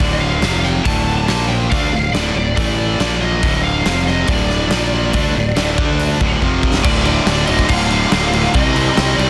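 Hard rock cut from a longer piece, aggressive and menacing, with a warm, overdriven lead guitar picking the melody over a heavy, distorted high-gain riff guitar and a crunchy rhythm guitar in the background, a growly fuzz bass with punch, and a huge, up-front arena drum kit with bright cymbals and a pumping hall sound, whose fill at 6.4 seconds leads into a new section at 6.8 seconds, in a dense, heavily limited modern master.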